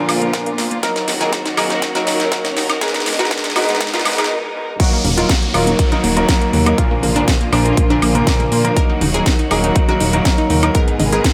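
A light digital reverb sets a clean, airy space for this driving, bittersweet progressive house excerpt at 121 BPM in Eb harmonic minor, cut from a longer piece. A punchy, up-front electronic kick and a house kit of cracking snare, metallic hats and woodblock, tape-warm and re-recorded in a small room, drive the track from its opening moments. The build-up pairs a drum fill with a filter sweep on a lush, detuned sawtooth pluck playing arpeggios in the background, while a faint, glassy sine texture with drifting overtones hovers until 4.3 s and a very quiet riser and downlifter thread through from 0.8 s. After a brief break, the drop lands at 4.8 s. Electronic toms and congas join in the background from 5.0 s, and a fat, detuned analog bass pumps against the kick beneath chords cycling through Ebm, Bb and Abmadd9. A worn yet natural grand piano carries stabs with tape echo, and a distant, focused string section with vibrato holds sustained chords behind it, both breathing with sidechain pumping.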